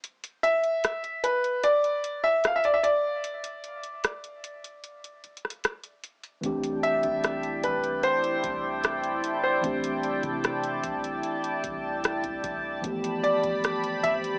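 A booming analog drum machine with a deep kick, metallic hi-hats and rim clicks opens this smooth, tender contemporary R&B excerpt, its vintage sampler grit up front, while a very quiet downlifter sounds at the start and a clear, intimate baby grand piano soon carries the melody with audible action noise. At 6.4 seconds a mellow tine electric piano, a shimmering chorused pulse-width pad with plate reverb, and a soft, round 808-style bass deep in the background join over chords moving from C69 to G13. The electric piano and pad carry a cassette-tape character within a small home-recorded room, and a faint swell closes the passage at 14.1 seconds.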